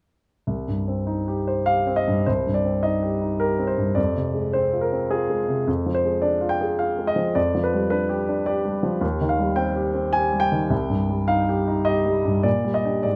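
A grand piano opens at 0.5 seconds, playing alone in a romantic classical character piece in C minor with a passionate, stormy mood. The pianist moves in a flexible rubato around 106 BPM in 3/4 time, covering a range from C2 up to Ab5. The instrument has a warm, polished tone with a short sustain and sits up front, close and present. A brief opening gives way at 2.3 seconds to a longer passage whose harmony moves from C minor through F minor, a diminished chord over F and G7 over F, then returns to C minor and closes on G minor over Bb. The close, detailed microphones and very little reverb keep every note clear in this passage cut from a longer work.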